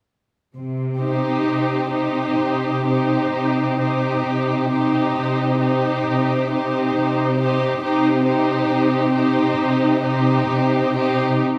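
A moderate scoring-stage reverb with a 1.7-second decay gives this short string orchestra excerpt a spacious, lush glow. It is a slow, romantic classical movement in C minor at 66 BPM in 4/4, its beats uneven and pushed and pulled by rubato, with a yearning, melancholic mood that stays on a C minor chord. The cello section opens alone at 0.5 seconds, laying down a warm, focused bass line that sits up front in the mix. At 1.0 seconds the upper strings join. The first violins carry a woody melody with a smooth top and dark colour, while a second violin section adds a rich, focused line beneath it. The violas fill in the accompaniment with expressive vibrato and portamento, and the ensemble plays until the cellos close at 11.6 seconds.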